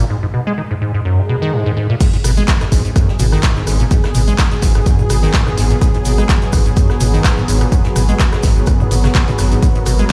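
Gritty and raw, this acid house excerpt at 126 BPM in G# minor opens with a break in which a squelchy, hollow square-wave acid bass riff under a filter sweep pulses with sidechain pumping over a deep, saturated sine sub bass, a detuned sawtooth pad with warbling vintage chorus and a grainy, very quiet egg shaker, while an electronic swell appears in the background at 1.2 seconds, before the drop at 2.0 seconds lands on a G#m7 chord and brings in an up-front, punchy kick, an analog drum machine with handclaps, rim clicks, hi-hat, toms and crash cymbal, and a very quiet brushed jazz kit, the mix played back through a big sound system in a bare stone room.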